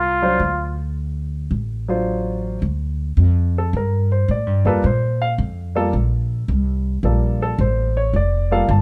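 A swung eighth-note feel in 4/4 carries this short, smoky jazz fragment, cut from a longer piece. A plunger-muted trumpet opens with a breathy, whispered wah-wah phrase around F4, touched with vibrato and a soft attack, but it lasts only until 0.8 seconds. The pizzicato upright bass plays throughout, woody and growly on steel strings, sitting up front in its low register. A warm baby grand piano enters at 0.2 seconds with accompaniment, moving from a D7#9 chord to a Gm9 at 2.6 seconds, where the second section begins. Light reverb gives the intimate, swinging performance a gentle sense of space.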